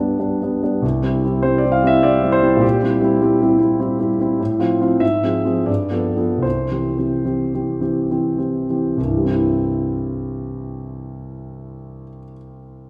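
A warm concert grand piano opens alone on a G chord, then settles onto C major in this brief passage from a romantic character piece in 3/4, its rubato feel carrying a hopeful, passionate mood at 67-104 BPM. Between 3.5 and 9.0 seconds the tempo slows as the harmony moves through F/A, F minor over A-flat and G9 before resolving to C, after which a new section begins at 9.0 seconds. The piano sits up front with deep bass, spanning C2 to F5, set in a moderate concert hall reverb.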